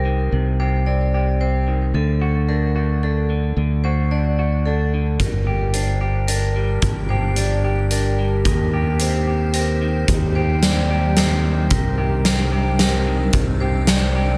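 Melancholic and brooding, this post-rock passage in 3/4 opens with a slightly broken-up, lo-fi electric guitar and a ringing vibraphone played with medium hard mallets, both playing arpeggios through tape echo, over a bright, up-front fingered electric bass. A huge arena drum kit with a punchy kick enters at 5.2 seconds, and an icy, crystalline glass pad with chorus joins at 5.7 seconds, holding sustained chords as the harmony moves through Cm7, D, Gm and Eb6. The fragment sits in a light studio reverb and is cut from a longer piece.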